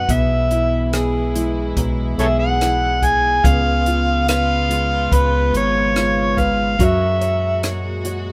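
Hopeful and tender, this short excerpt from an acoustic folk-pop ballad moves in a straight, unhurried 4/4. An overdriven harmonica carries the melody up front, its amplified, gritty tone shaded by light vibrato and punctuated by tongue slaps in a jazz-inflected solo style until it drops out at 7.7 seconds. Beneath it, a plugged-in, fingerpicked steel-string jumbo acoustic guitar offers a full-bodied sound and the occasional finger squeak, while a fingered electric bass adds a dark, round, direct low end. A compact cocktail drum kit keeps time on hi-hat, rim click and a dry, punchy kick. In the background, a chamber string section sustains soft-attacked, sul tasto chords with an intimate, close feel, and a concert harp rings out on a single F#4 at the start before returning at 6.8 seconds with arpeggios. The sound is close and dry, with little reverb, as the chords move from E/B through C#7 to F#add9.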